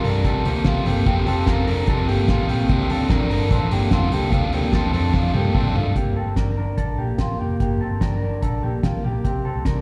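A crunchy, overdriven guitar, bright and twangy arpeggios from an electric guitar through a small old amp, a round, foam-muted fingered bass and a cloth-damped, thuddy drum kit with a fat snare open this wistful, bittersweet cut of jangly indie pop at 147 BPM on an Fadd9 chord, with slapback echo on both guitars, a drum fill leading to 6.0 seconds where the overdriven guitar stops, and a move to Csus2 at 9.2 seconds, the band heard as a live gig through the venue's PA in a lush hall reverb.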